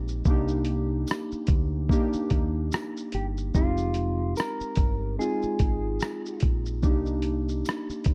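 This hazy, nostalgic lo-fi hip hop excerpt opens with warbling synth keys, softened by chorus and a low-pass filter, and a round, dark fingered electric bass from the very start, with a sampler-style drum kit arriving at 0.1 seconds. The drums sit at the front with a thumpy kick, rim click, hi-hat and shaker, all pitched down, muffled and carrying a gritty vintage 12-bit character under a warm, tape-like compression. A jingly tambourine enters at 1.1 seconds, kept close, dry and in the background. At 3.1 seconds a mellow, clean electric guitar takes the melody, its fingered tone darkened by a low-pass filter, and it drops away by 6.4 seconds. The unhurried swung groove moves from Cm9 to Fm7 and back to Cm9, giving the brief passage a hazy, nostalgic feel. The production is dark and intimate, with little reverb, so the parts sound near and dry.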